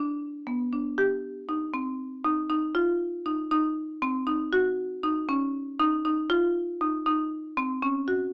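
This contemporary instrumental fragment, cut from a longer piece, features a single marimba played with medium mallets, heard alone from 0.0 to 8.3 seconds. The mood is hypnotic and pensive, moving in a straight 7/8 metre at 236 BPM counted in eighths, with the instrument tuned to A4 = 439 Hz. The marimba's padauk bars give a woody, dark and smooth tone, and the part stays within a range from B3 to G4. Sitting up front in the mix, the marimba is wrapped in light reverb, while the overall sound has a small-speaker character.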